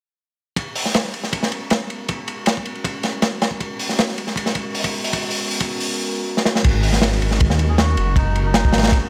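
A crunchy breakbeat drum kit at 158 BPM drives this dark, atmospheric drum and bass excerpt in G# minor, with a warbly, nostalgic pad holding a G#m11 chord in the background under a filter sweep until a drum fill at 6.4 seconds drops into a deep, rumbling detuned saw bass at 6.6 seconds, joined at 7.7 seconds by a reedy, breathy melodica trailing dub echo.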